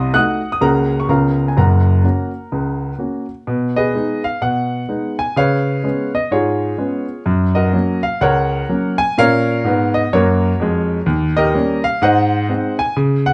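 A clear, intimate grand piano plays solo stride jazz with an exuberant, swinging feel, sitting up front with audible action noise as it spans F#1 to Gb6, moving from a diminished chord through dominant sevenths and ending on G#7 while a moderate club reverb and dark production round out this short cut from a longer piece.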